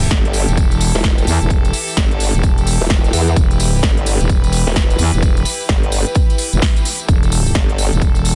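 Bass house at 129 BPM in E minor with a 16th-note swing, this swaggering, gritty cut sits on a single Em chord, driven by a punchy, tape-warm electronic kick up front and a big-room kit of crisp hats and snare, with a jingly tambourine tucked in the background. A thick, growling FM bass and a saturated, chorused formant-sweep wobble bass fill the low end, both pumping against the kick. Behind them, an earthy chamber string section holds sustained bowed chords with light vibrato, also pumping, all inside a dense, heavily limited modern master.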